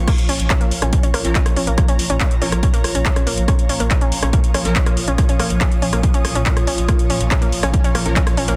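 Driving peak-time techno drop, relentless from its first beat, where a punchy up-front kick and a techno kit of metallic hats, handclaps, rim clicks and crash cymbals, both re-recorded in a small room, drive a thick overdriven sub bass, a round, nasal analog pluck riff with chorus and tape echo, a tense swarming drone and a bright, ethereal pad with phaser, all four pumping to the sidechain, while a very quiet, aggressive rave stab appears from 1.2 to 4.8 seconds and returns briefly at 8.1 seconds, under a light reverb and a dense, heavily limited master.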